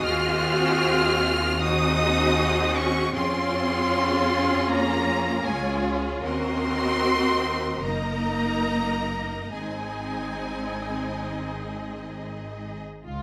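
In a rubato 4/4 around 65-79 BPM, this slow romantic movement for string orchestra unfolds in a lyrical, serene mood, cut from a longer piece and moving through chords from Ab7/Eb to Db/F, Ebm7 and a closing Ab. An expressive, up-front violin section carries the lush, vibrato-rich melody up to F6, while a second, soft-attack violin line, a viola section adding portamento to its accompaniment (ending at 12.8 s), a clear, focused cello section in the background and a woody double bass section fill out the harmony. The strings sit in a wet scoring-stage reverb that lends the ensemble a warm, enveloping glow.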